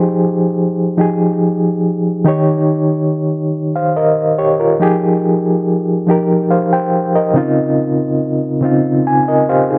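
Late-night and yearning, this R&B excerpt in a straight 6/8 features an overdriven reed electric piano alone, its gritty, reedy tone shimmering with fast tremolo through a combo amp and sitting up front in a dark, moderately roomy mix as it moves through Fm9, Eb7 and Dbmaj9 before a fill at 8.6 seconds.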